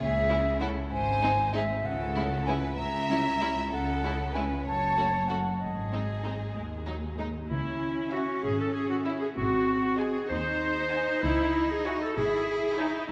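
Magical and mischievous, this playful, whimsical film cue moves at an unhurried 64 BPM in a lilting 6/8, set in C# minor and cut from a longer piece. A bowed string bed of dark double basses and smooth, even cellos anchors the low end, while distant violas fill in the accompaniment and a focused chamber violin section carries the melody from the background. A second violin section, lush and expressive with soft attacks and portamento, adds a distant secondary line. Up front, an airy, mellow flute with straight tone sings a counterline until about 7.1 seconds, and a present, classical-style solo clarinet takes over the second line from 7.5 seconds. The harmony turns through minor, diminished and dominant-seventh colours before settling back on C# minor, all bathed in a wet concert hall reverb.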